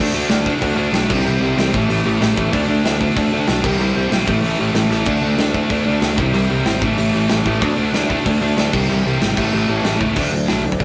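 Punk rock at 189 BPM in D major, energetic and rebellious, with a crunchy overdriven guitar and a dark, sludgy distorted guitar driving picked riffs over a repeating D, C, A progression, a growly picked electric bass underneath, and an up-front acoustic drum kit with punchy kick and bright cymbals that enters at 0.3 seconds and throws in a fill at 4.9 seconds, all captured with a rough rehearsal-room feel, moderate reverb and saturation in this short cut from a longer piece.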